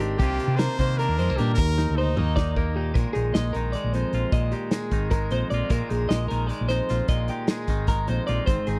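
A bright, intricate math rock and midwest emo excerpt in 7/8 opens with the full band at once: a twangy electric guitar on clean, compressed accompaniment, a twelve-string electric guitar spinning bright picked arpeggios high above it, a round, punchy hollow-body bass sitting dark and up front, and a loose indie drum kit with a tight kick, medium-tuned snare and softened top end. At 0.2 seconds a brilliant, close-miked trumpet enters with a forceful pop-style solo line, its vibrato trailed by a slapback echo, over Cm11 moving to Ebmaj7. A drum fill leads out of this opening passage, and the trumpet drops out at 2.8 seconds. From 3.0 seconds the guitars, bass and drums settle onto a Bb7sus4 for the rest of the cut. The sound is dry and intimate, a close 1970s-style studio recording with small room ambience.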